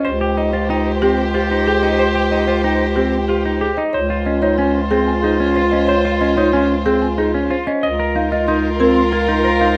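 Propulsive and bright, this excerpt of minimalist classical pattern music in 6/4 sets a woody, rustic folk marimba melody over clean, picked arpeggios from a semi-hollow electric guitar. A vintage-toned clarinet keeps its second line in the background, a rich chamber violin section holds sustained chords with vibrato, and an up-front bass clarinet anchors the bass on a steady Db. Close, detailed microphones capture the group in a moderate recital hall reverb as the harmony moves from a rootless Abmaj7/Db through Dbmaj7 to Ebsus2/Db.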